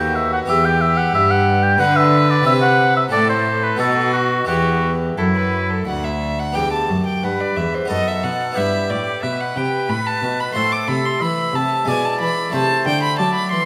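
Baroque-style classical sonata movement in E minor, flowing and radiant at 90 BPM in a straight 3/4, cut from a longer piece and heard in a resonant recital hall with a 1.6-second decay. A bowed gut-string violin, close and up front, carries the melody from F#4 to D6 while a clear, vibrato-touched solo oboe sings the second line just above it in level. Beneath them, a dry, plucked French-style harpsichord with two sets of strings fills in the accompaniment, and a reedy period-style cello anchors the bass as the music moves from its opening section into a second one at 6.6 seconds.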